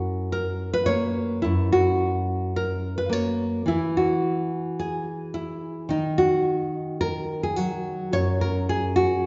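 At a steady 108 BPM in straight 4/4, this short folk excerpt cut from a longer piece moves with an unhurried, hopeful pulse. A solo nylon-string guitar carries everything from 0.0 to 9.3 seconds, fingerpicked and sitting up front, its full-bodied, deep classical tone spanning from F#2 up to C#5. The harmony rests on F#, gives way to a passage outside any defined chord at 3.7 seconds, then moves through D#m at 5.9 seconds before returning to F# at 8.1 seconds. A wet recital-hall reverb with a 1.7-second decay surrounds the instrument, giving it the resonant air of a church or concert hall. The high end is gently rolled off, so the sound stays soft and rounded, with a warm, quietly optimistic mood.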